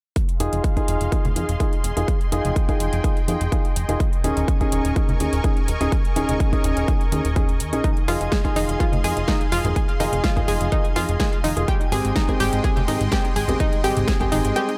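This excerpt from a longer progressive house piece opens at 0.2 seconds with a lush, detuned supersaw pad holding sustained chords under a low-pass filter and sidechain pumping, joined by a punchy, up-front electronic kick and a big-room kit with a huge snare and metallic hats. Within moments a dark, mellow grand piano with audible action noise adds short stabs through digital delay, while a plucky, funky analog bass of sawtooth and pulse waves pumps beneath. At 125 BPM in 4/4 with a straight feel, the music moves through Fm7, Eb7sus4 and Abmaj7 in F minor, tuned to A4 = 438 Hz, carrying an emotional, dreamy mood. Soft-handed congas sit in the background and a very quiet, twinkling granular texture with an octave-up shimmer hovers above, both arriving at 1.3 seconds. At 7.8 seconds a round analog pluck enters with arpeggios, colored by chorus, cassette tape character and digital delay, and the kick drops out at 14.6 seconds as the passage closes in a dry space.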